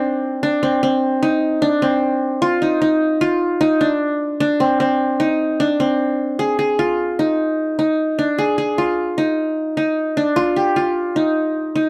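Progressive instrumental music in 5/4 at 151 BPM, this short section cut from a longer piece has an intricate, sunlit mood and a straight feel, set in Ab lydian with tuning at A4 = 443 Hz. A solo qanun carries the whole passage, its plectrum-plucked triple strings sounding acoustic and bright-edged as it moves between C4 and Ab4. The instrument sits up front in a dry, close recording with a 1970s studio character and little reverb, so every pluck reads clearly. Harmony opens on Cmadd9 and turns to Dm, then a new section arrives at 6.4 seconds on a bare Ab5. A closing shift to Dmadd11 at 10.4 seconds leads the passage toward its cut at 11.9 seconds.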